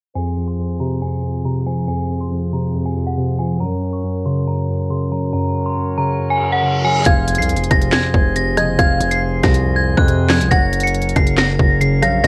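Drill-style hip hop in a cold, tense half-time feel, cut from a longer piece, where a metallic, inharmonic FM bell rings out the melody over warbly, nostalgic synth keys and light chamber organ chords with chiffing flute stops, all dusted with cassette grit and a filter sweep, until a reverse cymbal rising from 6.3 seconds and an impact at 7.1 seconds bring in an up-front drum kit with a hard-clipped kick, a sharp snare and crisp hats, a heavy, aggressive distorted 808-style bass and a dark, detuned pluck line with tape echo.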